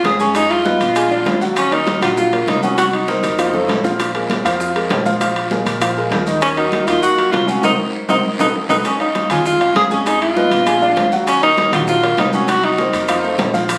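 Caught on a phone in the room and bathed in heavy large-studio reverb, this passionate, danceable salsa excerpt puts a warm, roomy tenor saxophone with vibrato up front. The sax sings a pop-style solo melody, drops out at 3.8 seconds and returns at 6.4 seconds. Beneath it, a clear, worn grand piano rings with long sustain over chords such as Fm7b5, Bb7b13 and Ebm7, while a woody, thumpy pizzicato upright bass on gut strings anchors the low end. Soft-handed, thick-skinned congas, very quiet round bongos, ringing saturated timbales, a raspy guiro and grainy maracas drive the groove, with drum fills at 3.1 and 8.1 seconds and a band accent from 7.6 seconds.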